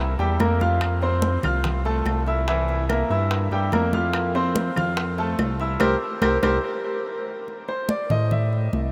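Soaked in a huge ambient reverb that gives the mix a dreamy glow, this relaxed, sunny fragment of Cuban son and guajira moves at 144 BPM in straight 4/4, swaying between C7 and Fmaj7. A brilliant, up-front concert grand spins arpeggios through tape echo over a smooth, evolving sawtooth-and-square synth bass with vibrato, while close, dry congas struck with hard hands join in, and tight, high-tuned bongos and woody claves sit in the background. A band accent lands at 5.8 seconds, a drum fill follows at 6.8 seconds, the bongos and claves drop out at 6.5 seconds, and from 7.5 seconds the piano takes a short solo over a C6/9 chord.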